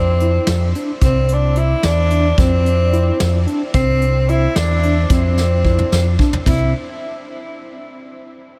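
Set in a straight 5/8 at 220 BPM in eighths, this bright, intricate progressive instrumental excerpt pairs a distant, vibrato-tinged tenor saxophone melody with a round, amped picked electric bass, a worn, slightly out-of-tune tine electric piano playing arpeggios through medium tremolo and diffuse ambient delay, and a soft brush drum kit with a punchy kick that fills from 5.4 to 6.5 seconds, all moving between F5 and C chords in a dreamy mix soaked in huge reverb.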